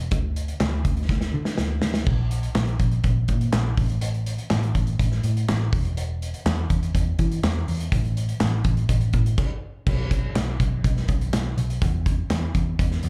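This piano-driven pop excerpt moves at a hopeful 123 BPM in a straight 4/4, captured live at a gig through the venue's PA with light club reverb. A round, foam-muted vintage electric bass sits up front with a loose indie acoustic kit whose punchy kick, medium-tuned snare, dark cymbals, hi-hat, handclaps and crash and splash accents pump in a small room. A drum fill arrives at 1.1 seconds, and a stop at 9.4 seconds sets up a new section at 9.9 seconds.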